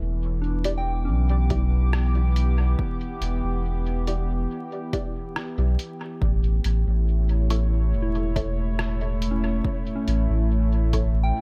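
Meditative and deep, this brief ambient dub excerpt rests on a round sine sub bass held up front beneath a warbling, nostalgic tape-like pad of chorused, reverb-soaked sustained chords, while a pure FM synth bell with 12-bit sampler grit and tape echo plays arpeggios in the background, a muted, phaser-tinged dub chord stab with a filter pluck adds echoing accents, a muffled, pitched-down sampler-style kit ticks out hi-hat and rim click through dub echo, and a punchy overdriven electronic kick enters at 1.5 seconds, all within an echo-heavy digital ambience flecked with vinyl crackle as Em7 gives way to A at 6.2 seconds.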